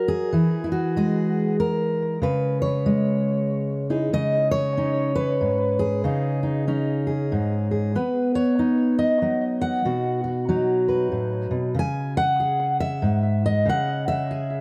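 This brief excerpt from a longer piece has an intimate, up-front sound, with light reverb around a single fingerpicked steel-string acoustic guitar. It is a melancholic solo folk performance at 94 BPM in 3/4, with a gentle swing on the eighth notes. The jumbo-bodied guitar sounds full and warm with fresh strings, and audible finger squeaks bring the player close. A touch of tape echo trails its notes across a range from G#2 to G#5. The harmony starts in C# dorian, moving from E to C#5, then settles into C# minor at 4.1 seconds with C#sus2, B and a return to C#sus2 before the guitar stops at 14.6 seconds.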